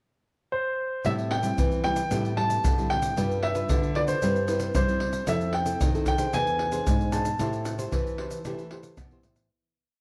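A warm, intimate concert grand piano opens at 0.5 s with a motif-based melody in sentence phrases, its action noise audible and its notes sustaining long and up front in this lively, nostalgic samba and choro piece at 113 BPM in A minor. From 1.0 s a dark, thumb-plucked nylon-string guitar adds thumb bass and syncopated plucked chords over Am7, G7, Cmaj7/G, Fmaj7 and E7b13, and a small-room percussion group of deep surdo, pandeiro and egg shaker sits close. A second, warm classical nylon-string guitar joins at 1.1 s with a samba bass figure. A moderate large studio reverb and a worn cassette-tape warble with pitch drift give the short piece a faded feel before it fades out from 7.4 s.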